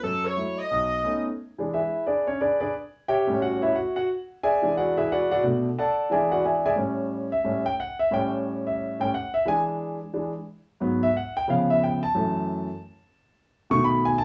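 A studio room with a moist reverb holds a small jazz band playing live, heard here in a short excerpt cut from a longer piece. At 178 BPM in 4/4 with a gentle swing on the eighth notes, the mood is swinging and joyful, centred in E mixolydian. A clear, tight saxophone section opens with the melody, close-miked and up front, its soft attack and light vibrato giving the brief phrase a polished jazz sheen before it stops at 1.3 seconds. A concert grand piano, natural in tone with a deep bass, plays accompaniment from the start and takes a solo from 1.4 seconds through to the end at 14.2 seconds. Underneath, the harmony moves through bright dominant chords such as E7, A7 and E9, then turns through G#m7, C#7alt and F#m7 before landing on B7.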